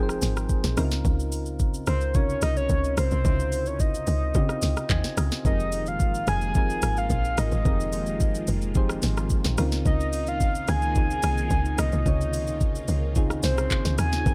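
Dark, warm digital ambience frames this soulful, hypnotic amapiano excerpt at 109 BPM, where a knocking electronic R&B kit with a sharp snare, metallic hats, handclaps, rim clicks and shaker sits up front over a woody, punchy log drum bass, while soft, round electric-piano-like synth keys with chorus move between Fm11 and Dbmaj13 and add a fill at 4.6 seconds, a full, detuned octave-layered synth lead carries the melody with vibrato, chorus and tape echo, and vintage string-machine cellos, phased and mellow, enter in the background at 5.4 seconds.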